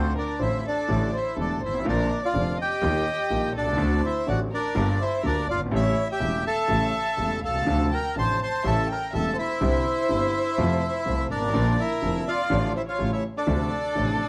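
A reedy bandoneon sits up front carrying the melody in this passionate, sultry tango, played with a rubato feel and cut from a longer piece, while a bowed violin adds an expressive second line with a soft attack, vibrato and portamento. Beneath them, a clear, intimate grand piano with deep bass, long sustain and audible action noise supplies the accompaniment, and a distant, focused bowed double bass with vibrato holds the low end as the harmony moves from Dm7 through Bbadd9 and Ebadd9 before settling back on Dm7. The dark production sits in a moderate large-studio reverb, with vinyl crackle running through it.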